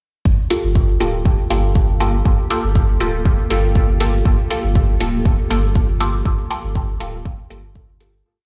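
A meditative, hazy dub techno piece opens at 0.3 seconds with a deep, layered four-on-the-floor kick up front and a round sine sub bass pumping in a dotted rhythm, joined by muffled, pitched-down closed hats and muted, detuned sawtooth chord stabs on the off-beats, their filter sweeping through phaser, cassette-tape grit and dub echo, while from 1.2 seconds a cloudy granular pad drifts in the background with its own reverb, all held on a single minor ninth chord in a big, bare-room ambience until a fade-out from 5.6 seconds.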